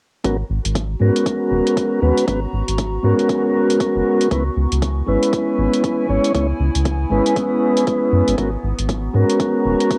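Smooth and warm, this deep house excerpt sets up-front mellow, flute-like tonewheel organ stabs with slow rotary shimmer, sampler grit and tape echo over a round, dark analog bass and overdriven electronic kick and hi-hat, while a warbling, nostalgic tape-like pad with chorus and phaser enters at 1.0 s holding sustained chords that move from G#m11 to C#m7 and back, the pad, organ and bass pumping together in a lo-fi, cassette-recorded space touched by spring reverb.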